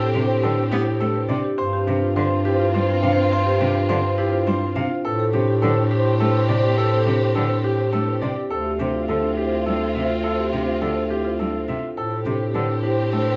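A solo bass clarinet sits up front with a smooth top, carrying the bass line low beneath this bright, hypnotic passage of minimalist classical pattern music, cut from a longer piece. The tempo is 104 BPM in a straight 3/4, in A minor, with a grand piano playing the melody in a brilliant, open tone with long sustain, while a marimba struck with medium mallets spins mid-forward arpeggios. A rich, focused solo cello bows the accompaniment with vibrato, and a studio violin section holds lush, expressive sustained chords from a distance. A French horn adds a second line in a classical style, roomy and set in the background. The harmony moves from Am9 to G7sus4, returns to Am9, shifts to Dm7 at 8.5 seconds and settles back on Am9 at 12.0 seconds. A moderate large-studio reverb with a 1.0-second decay surrounds the ensemble, and the sound tops out at 7.8 kHz.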